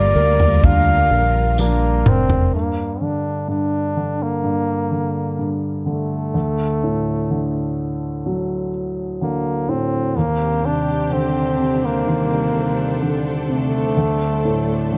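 A slow, straight 4/4 pulse at 63 BPM carries this heartbroken pop ballad in G harmonic minor, a short fragment cut from a longer piece. A mellow, up-front flugelhorn sings the jazz-style solo melody with light vibrato and a smooth top, while a dark concert grand piano with deep bass supports it throughout. In the opening bars, a round, punchy fingered electric bass and an acoustic drum kit, with a tight kick and toms played with bundle sticks, lead into a drum fill brushed by a jingly tambourine, before both bass and drums stop at 2.5 seconds. A lush, bowed string section plays soft-attack sul tasto chords with vibrato at the start, then returns at 10.1 seconds to cushion the horn. The harmony moves from Gm7 and Gm through D and Cmadd9/Eb to a closing D7. A small room reverb gives the production a dark, warm feel, full of emotion.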